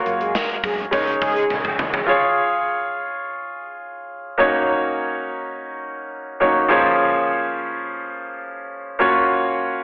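A wet, arena-sized reverb with a telephone-like tint surrounds this nostalgic, romantic excerpt of 1980s-style pop at 104 BPM in Db major, where a gated drum kit with a punchy kick, a round muted electric bass in the background and mellow, detuned synth brass stabs with chorus and slapback echo drop out by 2.1 s after a drum fill, leaving a clear, up-front concert grand piano to carry the chords from Db through Ebm7 and Bbm7/F to Gbmaj7 until 9.8 s.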